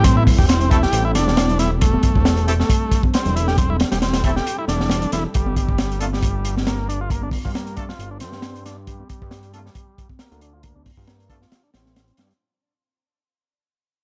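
A swung breakbeat groove in 4/4 drives this raw, gritty breaks excerpt, built on a crunchy, saturated drum kit with a punchy kick, a high-tuned snare, hi-hat and a rolled-off top, sitting up front in a small room. Soft-handed congas, bright and compressed, add percussion in the background, while a fat, detuned sawtooth bass holds down the low end with a fast attack and sustained notes. An overdriven combo organ with heavy vibrato plays a buzzy, vintage riff through a low-pass filter and dub echo, and a deep, moody pad with a slow attack sustains Am7 and then Gm9 chords under chorus and sidechain pumping. From 0.7 seconds, a tight horn section fires off octave-doubled stabs with 12-bit sampler grit, also filtered and echoed, while a barely audible downlifter sounds in the first 1.8 seconds. Filter sweeps run across the organ and horns as the whole passage fades out under a generous studio reverb.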